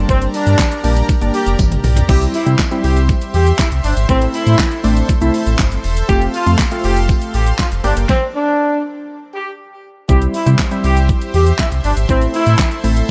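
A straight dance-pop groove drives this bittersweet, energetic excerpt, with an overdriven pop drum kit up front: a knocking kick, fat snare, warm hats, handclaps, shaker, crash and toms, plus a short drum fill at 1.6 s. A deep, full sub bass with an added octave sits close beside it, pumping against the kick along with the glassy, airy digital keys, which carry chorus and a filter sweep, and a lush, detuned supersaw pad holding long chords in the upper register. Over this, a tight horn section carries the melody in a pop style with light vibrato. A bright, jingly tambourine sits very quietly in the background until around 8.0 s, and the arrangement hits a stop at 8.1 s before the groove resumes. The chords cycle through Gm, C, Am and F, and the whole mix sits in a digital ambience.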